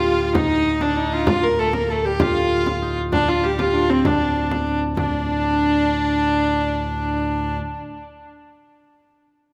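A smooth, wheel-bowed hurdy-gurdy carries the melody up front with a touch of tape echo in this driving, mysterious medieval dance in 6/8, joined by a dark, woody fiddle and a mellow, ringing concert harp in the background, a principal-stop pipe organ drone with baroque voicing and chiff, and a deep frame drum played with hard hands until 5.1 s, the whole passage cut from a longer piece and heard in a wet recital hall.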